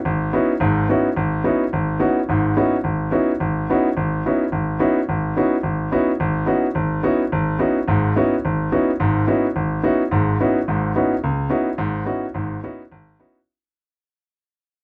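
A bright grand piano plays alone from 0.1 seconds in this cool, hypnotic jazz excerpt, swinging briskly at 215 BPM in 4/4 and opening on a C#m11 chord in C# minor, tuned to A4 = 441 Hz. The piano sits up front with a brilliant, natural tone across a span from G#1 to F#4, framed by light reverb in a dry, close 1970s-style studio sound. Cut from a longer piece, it moves into a new section at 11.2 seconds and fades out by 13.5 seconds.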